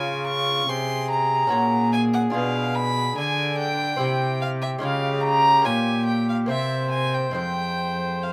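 A rich, reedy gut-string violin sits up front in this grave, introspective baroque-style sonata movement, bowing a high second line over a warm, close-miked trumpet melody with light vibrato, at 72 BPM in 3/4. A period-style bowed cello carries the bass while a bright, delicate fingerpicked lute with double strings fills in the accompaniment, all four playing throughout the 8.3-second fragment. The harmony passes through a diminished chord and C7 before settling on F minor, set in a moderate studio ambience.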